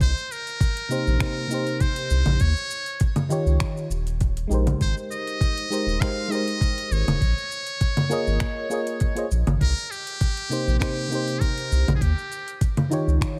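A digital ambience surrounds this sunny, relaxed sunset chillout excerpt at 100 BPM, where a knocking electronic kick and a deep, round analog bass sit up front under a smooth R&B kit of congas, finger snaps, metallic hi-hat and shaker, all lightly swung on the 16ths with studio reverb on the drums. A mellow FM electric piano with a soft noise layer, chorus and tape echo enters at 0.9 seconds, voicing chords that move from Cm7 through Eb7, Abmaj9 and Bbm11. Over it, a buzzy, thin trumpet in a metal mute carries the jazz-style solo melody with light vibrato, scooped notes and digital delay, sitting lower in the mix until it drops out at 12.6 seconds.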